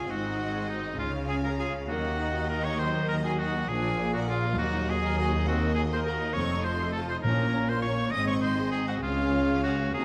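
A bright, present solo oboe carries a second line up front in this urgent, stormy excerpt from a quick classical-period symphonic movement in 6/8 at 67 BPM (dotted quarters), where the harmony passes from Ab7 through Ebm, Bb7 and F7 to Db, as a woody violin section plays the melody in the background over a smooth second violin line, lush distant violas, a dark, roomy French horn section holding chords, even cellos and an expressive, close double bass section, all set in a wet scoring-stage reverb, while very quiet hard-mallet timpani sound Bb2 from 7.2 to 8.1 s.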